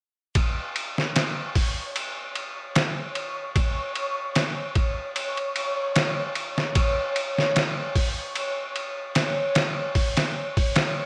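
A slow 75 BPM trip hop groove in 4/4, with a light swing on the 16ths, starts at 0.4 seconds on a sampler-style kit of thumpy kick, medium-tuned snare, hi-hat and ride cymbal. The kit is pitched down, compressed and gritty with vintage 12-bit crunch, and sits up front in a studio ambience. From 1.0 seconds a reversed, detuned backwards swelling texture hovers around C#5, its soft-attack, granular triangle tone dreamy and bright inside its own reverb, while a wet spring reverb gives this cinematic, hypnotic fragment of a longer piece a lingering haze.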